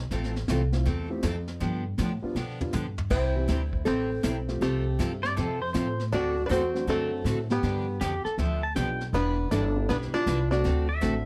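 A swung eighth-note groove in 4/4 drives this down-home western swing fragment, built on a growly, thumpy pizzicato upright bass up front, a bright, full-bodied picked dreadnought acoustic guitar, a vintage brush kit with dark cymbals and a tight kick, and a boxy, mellow upright piano with audible action noise. After a drum fill, a clean, fingered hollow-body jazz guitar bathed in plate reverb takes the melody at 3.1 seconds as a twangy, fingerpicked banjo adds a percussive second line. From 5.2 seconds a compressed pedal steel guitar with slide and volume swells sits up front, rounding out the swinging, homespun sound.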